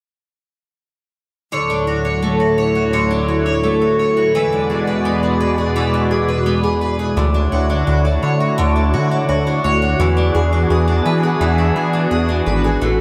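A thick, detuned sawtooth pad with chorus and phaser and a shimmering, octave-doubled fingerpicked twelve-string acoustic guitar with lush chorus and tape echo enter together at 1.5 s, opening this floating, blissful dream pop excerpt in D lydian at 85 BPM in a straight 4/4. The two parts move between Dmaj9 and E7, the pad holding slow-attack chords while the guitar plays arpeggios with audible finger squeak. At 7.2 s a glossy, nasal synth bass with chorus and a filter pluck joins up front, and a moderate recital hall reverb gives the sound depth.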